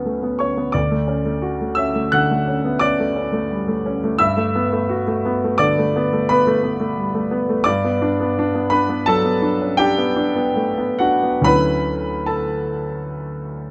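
A solo concert grand piano opens on a Bm9/D chord that quickly settles into Dmaj7, setting a luminous, serene mood for this short impressionist classical fragment taken from a longer piece. The playing moves in a flexible rubato within 5/4, with the pulse drifting between 63 and 89 BPM, and the instrument is tuned to A4 = 441 Hz. The harmony glides through lush extended chords, shifting to Gmaj9 at 4.2 seconds, easing into Gmaj7, and coming to rest on Dmaj9 at 11.5 seconds. The piano spans from D2 up to F#6, its clear tone balanced by a deep bass. Close, detailed microphones place the instrument up front, while a light reverb gives the sound an open quality.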